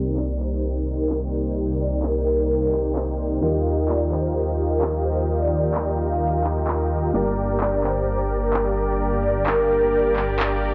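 In straight 4/4 at 129 BPM, this short slice of festival progressive house in G minor moves powerfully and emotionally through Cm7, Ebadd9 and Gm, with layered electronic handclaps entering at 0.2 s, their hats and snare softened by a low-pass filter and a filter sweep running through the drums. Up front, a huge, dense, compressed supersaw riff carries vibrato, delay and its own sweeping filter, while a detuned saw bass adds a thick, beating, menacing low end through tube saturation. A lush, nasal unison pad holds sustained chords with soft attack, long release and chorus, and a dark, mellow grand piano sits very quietly underneath as accompaniment. The melody comes from a vibraphone played with soft mallets, metallic and ringing with fast motor vibrato and delay, stopping at 10.2 s. A moderate scoring-stage reverb with digital ambience surrounds the mix, and the top end is rolled off above 7.8 kHz.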